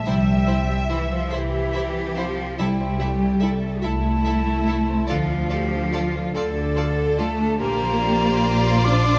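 A moderate scoring-stage reverb surrounds this hopeful, emotional film-score fragment in slow, rubato 6/8 at 48 BPM, where an up-front double bass section and smooth, close cellos anchor a lush viola accompaniment, a hollow, airy flute second line, ringing harp arpeggios in the background, and two background violin sections carrying a smooth melody and an expressive second line over C, Am/C, Dm and Bbadd9.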